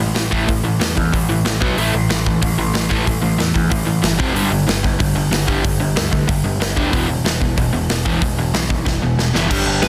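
A straight, driving 4/4 at 186 BPM carries this aggressive, urgent punk rock excerpt, with a big acoustic kit up front: punchy kick, medium-tuned snare, hi-hat and bright crash cymbals in a roomy space. Two picked semi-hollow electric guitars with a warm, hollow-body tone and overdrive sit in the background playing a riff over A5, B5, F5, G5 and E5 chords, while a bright, growling picked bass with its own grit holds down the low end. A drum fill runs from 8.9 to 9.5 seconds, and a dark, distorted high-gain lead guitar lands a single high note at 9.8 seconds, all within a dense, heavily limited modern master with light reverb.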